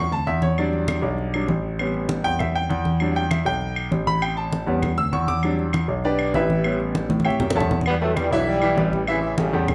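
Salsa at a festive, danceable 198 BPM in straight 4/4, this short cut from a longer piece opens with a bright, woody upright piano soloing over a dark, mellow concert grand holding the deep bass, while damped, low-tuned congas and distant claves fill out the percussion in a moderate studio reverb. The harmony rocks between Em7 and A7, and after a drum fill from 7.1 seconds, a punchy, tight trombone section with light vibrato and plate reverb takes the melody at 7.9 seconds, clear and up front through the close.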